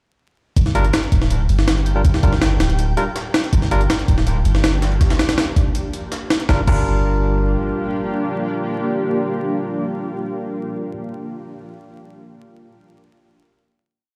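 A heavily chopped, pitched-up jungle break drives this frenetic and raw drum and bass piece at 162 BPM in G minor, its thumpy kick and medium-tuned snare sitting up front with gritty, compressed sampler character and crash cymbal accents. Beneath it, a very quiet looped breakbeat with edits adds a high-tuned snare and hi-hat. A deep, round sub bass with tube saturation plays long gliding notes from the drop at 0.6 seconds. A barky tine electric piano, clean through a combo amp but roughened by 12-bit sampler grit and dub echo, throws sparse chord stabs, one shape moved in parallel over a Gm7, while a twinkling granular texture holds a high note with an octave-up shimmer in the background and, from 4.1 seconds, a cloudy, evolving pad blurs sustained chords in reverb. The final chord arrives at 6.5 seconds as the drums fall away, leaving the piano stabs and pad ringing over vinyl crackle and the boom of a big sound system in a bare room.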